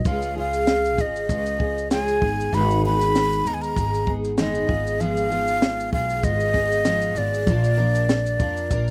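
Wistful and reflective, this short fragment of swung acoustic pop sets a breathy, mellow silver concert flute up front with a tongued, straight-toned and unsteady melody over a woody, growly pizzicato upright bass, a double-tracked, full-bodied fingerpicked jumbo steel-string guitar, and a compact cocktail drum kit of punchy kick, high-tuned snare and shaker with a dark, rolled-off top, all in a dry outdoor recording as the chords move from Db through Abm and Fdim/Ab to Bb.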